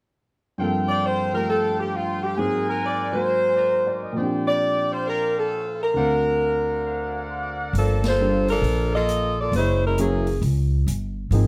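Close, detailed microphones and light reverb frame this brassy, swinging big band jazz excerpt, led by a mellow saxophone section carrying the melody up front over a natural-sounding grand piano's accompaniment. A clear trumpet section with light vibrato adds jazz-style stabs until the 7.8-second mark. Around 7.7 seconds a woody, growly pizzicato upright bass and a studio-room drum kit on hi-hat, ride cymbal and snare join in, and the band hits an accent at 8.0 seconds.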